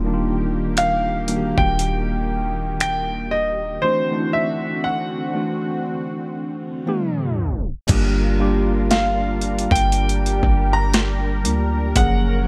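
A worn, slightly out-of-tune tine electric piano, a thick, warbling detuned pad with chorus and a deep, boomy 808-style bass open this dreamy, romantic contemporary R&B fragment at a slow 59 BPM with a swung 16th feel, before an intimate grand piano with audible action noise and tape echo takes the melody and a gritty, overdriven sampler-style kit of thumpy kick, snare, hi-hat, finger snaps and crash enters at 0.8 seconds, drops out at 3.8 seconds, and returns at 7.9 seconds after a tape stop and a very quiet reverse cymbal, all in a dry, up-front mix over chords moving from Ebmaj7 through D7, Bb7sus4 and Gm7 to Gbmaj7.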